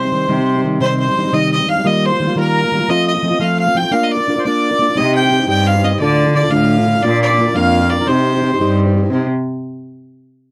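A dry, close studio sound in a 1970s style carries this short cut from a longer Celtic jig, a spirited, driving tune in C dorian at 116 beats per minute in 6/8. A single bright, nasal fiddle takes the bowed melody, with an accordion beside it as a reedy, full second line in the same register. Underneath, a fingerpicked plugged-in steel-string acoustic guitar gives a dark, up-front accompaniment that runs until about 9.3 seconds. A bowed cello with a gut-string tone and light vibrato provides the bass, sounding briefly at the start and then returning from 5.0 seconds to the end. The chords move through Cm, Ebadd9, F and Bb, then Cm, Dm and Bb before landing back on Cm, and a new section begins at 9.1 seconds just as the fiddle and accordion have finished.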